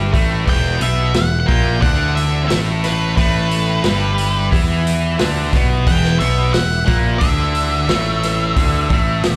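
Blues rock power trio with a southern rock edge, this smoky, heavy cut from a longer piece sits on E minor at 89 BPM, as a tight, double-tracked distorted guitar riff with slapback echo and a bright, direct picked bass drive up front over a punchy, rolled-off vintage kit entering at 0.1 seconds, while a dark octave-fuzz lead guitar melody arrives at 0.5 seconds and a very quiet, gritty tonewheel organ holds sustained chords through a slow rotary speaker with key click, all heard as a live club gig through the venue's PA.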